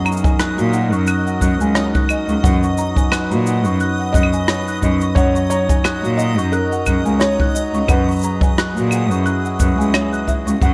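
A kick drum and a small kit of claves, shaker and rim click, played with brushes, set an easy swung pulse at 88 BPM in 4/4, the kick boomy and roomy as if heard from a distance. This short, warm and delicate folktronica excerpt in F# mixolydian rests on a reedy, breathing harmonium holding sustained chords, with a bright, thumb-plucked concert harp arpeggiating in the background through tape echo. A buzzing marimba with medium mallets adds a woody, dry second line, also run through tape echo, while a reversed, granular texture floats high above with a lush chorus and its own reverb. From 0.6 seconds a clear, focused bowed cello carries the bass up front with vibrato, and at 4.1 seconds a felt-muted upright piano enters with a soft, intimate melody, its action noise audible beneath the tape echo. The harmony circles between F#6, B over F# and Eadd9 over F#, all sitting in a dreamy mix soaked in plate reverb.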